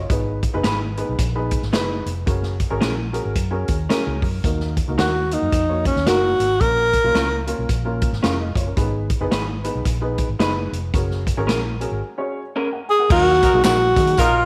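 A breathy, close-miked tenor saxophone carries the melody up front, with scooped notes and a whispered vibrato, first from 5.0 to 7.5 seconds and again from 12.9 seconds in this passionate, driving 1960s-style soul excerpt at 111 BPM in Eb minor with a swung feel. Underneath, a swinging big-band drum kit with a punchy kick, a dark, woody upright piano with audible action noise, a round, foam-muted electric bass and a slightly broken-up, lo-fi electric guitar playing stabs keep the groove moving through chords such as Abm, Gbadd9 and Bbm. Near the end, from 13.1 seconds, a mellow horn section adds a second line in the background, joined by tambourine, egg shaker and group handclaps, all in a small room with light reverb.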